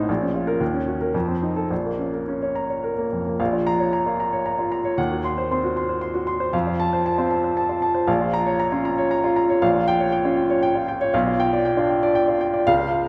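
A lush, reverberant church or concert-hall space surrounds a baby grand piano that sits up front with a natural, warm tone and short sustain, its notes trailing into a reverb of about 1.9 seconds. This passionate, agitated classical virtuoso study in Bb minor moves at 116 BPM in 3/4 with a free rubato feel, the solo piano ranging from A1 to C6 over chords such as Bbm, Ebm7 and F7. Around 3.4 s the music shifts into a new section that passes through Cdim/Eb and Gm7b5/Bb to a closing G7/B in this short cut from a longer piece.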